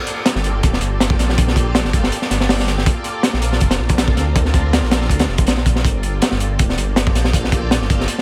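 Raw and atmospheric, this drum and bass excerpt with a jungle edge runs on a crunchy breakbeat kit of hi-hat, tight kick and high-tuned snare that sits up front, gritty and saturated with a rolled-off top. Beneath it, a dark detuned saw bass enters at 0.4 seconds with a deep, rumbling, beating tone thickened by tube saturation. A soft string machine holds silky, slow-attack chords through ensemble chorus, moving from Gm7 to Bbmaj7 and back, all inside a small room ambience.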